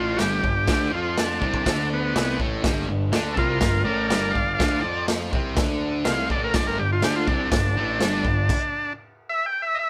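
Garage rock at 123 BPM with a rowdy, swaggering strut: a buzzy, overdriven transistor combo organ with heavy vibrato takes an up-front solo over a thick, double-tracked fuzz guitar riff, a dark, round fuzz bass and a punchy, gritty drum kit pumping in a small room, all played live together under light reverb until a stop at 8.5 seconds leaves the organ carrying on alone to the cut at 9.9 seconds.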